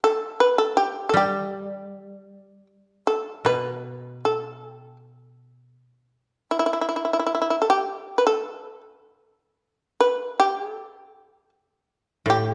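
A bright, buzzing shamisen opens this austere, calm excerpt of Japanese traditional music, its plectrum-plucked, percussive melody sitting up front in the middle register at a loose, rubato 79 BPM in 2/4. A woody, dry koto joins underneath in a low register at 1.1 seconds, plays a fingerpicked accompaniment until 5.7 seconds, and returns only briefly at 12.3 seconds as the closing passage ends. A moderate hall reverb gives the shamisen a sense of open space, with the instruments tuned slightly above standard pitch.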